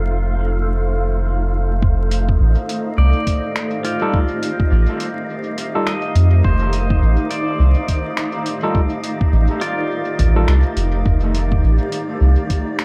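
A cloudy granular pad, a deep, round dub sub bass and a breathy, wind-like noise texture open this hazy, peaceful ambient dub piece. A muffled, thumpy kick arrives at 1.8 s, joined at 2.1 s by a pitched-down lo-fi sampler kit of finger snaps and hi-hat, then a twangy pedal steel plays slide arpeggios with volume swells from 3.0 s, and a barky, overdriven tine electric piano adds gritty stabs from 4.0 s. The kit, steel and piano trail dub echo over a bed of vinyl crackle.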